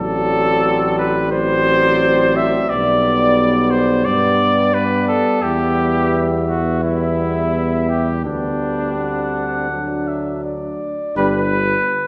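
Bathed in a wet recital-hall reverb, this stately, noble classical brass quintet excerpt moves at a rubato 81-89 BPM in 4/4 and G major, with a vintage-toned trumpet carrying the melody until 12.1 s above a second trumpet's smooth, lightly vibrato line up front, a bright trombone and a soft-attacked, distant French horn providing accompaniment in the background, and a warm bass trombone anchoring the bass up front as the harmony travels from D7/A through G, Em and D before settling on G at 11.2 s.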